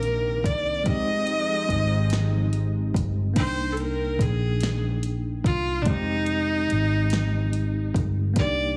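A clear, focused viola carries a yearning vibrato melody through tape echo in this slow, late-night six-eight R&B piece, over a worn, slightly out-of-tune electric piano with light overdrive, a round, dark foam-muted electric bass up front, an electronic drum kit with a soft kick, fat snare and metallic hats, and a detuned sawtooth analog pad with chorus that stops at 3.3 seconds, the whole mix squeezed into a heavily compressed, radio-like sound.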